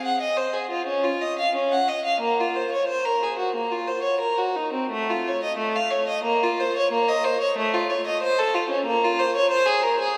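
Introspective and solemn, this short passage from a baroque-style suite movement for unaccompanied violin moves at 90 BPM in 4/4, though the rubato lets the pulse breathe freely. A single bowed violin carries the whole span from 0.0 to 10.2 seconds, ranging from A3 up to Gb5. Its tone is clear and focused, with vibrato colouring its notes, and it sits up front while keeping a faintly distant quality. A wet church reverb with a long 3.6-second decay surrounds the instrument, giving the playing a spacious, devotional glow. The tuning rests slightly below standard pitch at A4 = 439 Hz, and the recording is a fragment cut from a longer piece.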